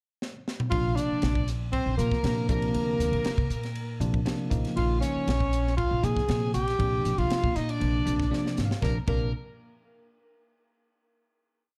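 A breathy tenor saxophone leads this short, funky and slick piece of electric jazz fusion, singing a mellow, motif-based melody in period phrases with light vibrato and scooped notes, placed up front in the mix. Beneath it, an upright bass plucks a woody, syncopated riff on steel strings, while a bell-like tine electric piano lays down clean, quartal voicings in a push chord rhythm and adds a fill just before the close. An overdriven electric guitar, bright, picked and double-tracked in octaves, carries a second line at a lower level behind the saxophone. The crisp fusion drum kit, airy and polished, with its high-tuned snare, punchy kick and fusion ride groove, opens the piece with a short fill at 0.2 seconds before the band enters and fills again at 8.3 seconds. Light studio reverb sits over the dark, warm production, and the piece comes to rest on a final chord from 8.8 seconds.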